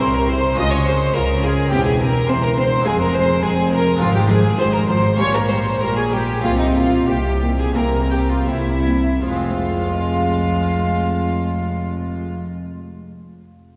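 Heard from further back in a wet church reverb, this stormy, driving baroque-style concerto movement in F minor opens at 78-106 BPM in 4/4 and slows between 2.9 and 9.2 seconds before settling onto F minor at 9.2 seconds. A rich, reedy solo violin with light vibrato and gut-string tone carries the melody alongside a smooth-topped violin section set in the background higher up, while a second violin section plays a supporting line. A dark, distant viola section and an airy, bright, plucked harpsichord in the background fill the accompaniment, above a bass of warm, bowed cellos and an up-front double bass section.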